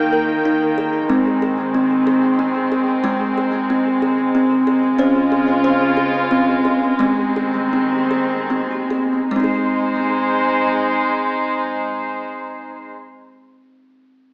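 Bathed in a wet echo-chamber reverb and narrowed to a lo-fi AM-radio sound, this gentle, dreamy fragment of meditative world music sways in 3/4 with a straight feel. A woody, hollow-boxed kalimba spins ringing thumb-plucked arpeggios through a diffuse ambient delay, while a dark chamber string section holds bowed sustained chords with a nasal, reedy gut-string tone, both parts sitting up front. The pace slows between 5.0 and 9.3 seconds before a brief new section begins.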